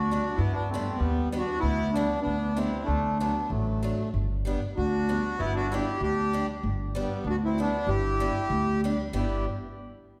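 Alpine folk dance-band music in G major at 96 BPM in a swung 2/4, festive and jolly, with a reedy, slowly beating accordion carrying the melody up front, a mellow trumpet playing a second line beneath it, a woody, growly pizzicato upright bass, and a bright picked archtop guitar accompanying over chords moving from G to D and back, all heard from further back in a wet scoring-stage reverb in a short cut from a longer piece.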